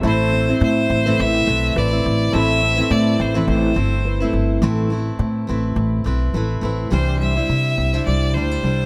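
Heartfelt and sunny, this short acoustic pop excerpt moves at 105 BPM with a light sixteenth-note swing, shifting from Amadd9 to Cadd9 at 6.9 seconds. A woody, growly pizzicato upright bass and a full-bodied picked steel-string guitar sit up front, while a thumb-plucked nylon-string guitar plays delayed arpeggios in the background and a very quiet, vintage-toned grand piano drops out at 4.6 seconds. Over them a single bright, intense bowed violin carries the melody with vibrato and delay, sounding distant yet forward in a dry room.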